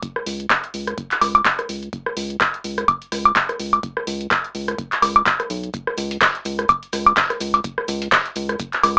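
An electronic kick drum with a deep, tape-warm thump and a punchy analog drum machine up front with handclaps, hi-hat, rim click and woodblock open this raw, hypnotic acid house excerpt at 126 BPM in 4/4 with a 57% swing on the sixteenths, joined at 0.3 seconds by a round, mellow analog bass pumping from the sidechain between B1 and C#2, while from 5.7 seconds a gritty, compressed sampler-style kit of filtered hi-hat, shaker and fat snare sits in the background, all under light reverb with the lo-fi character of a cassette home recording heard through a small speaker.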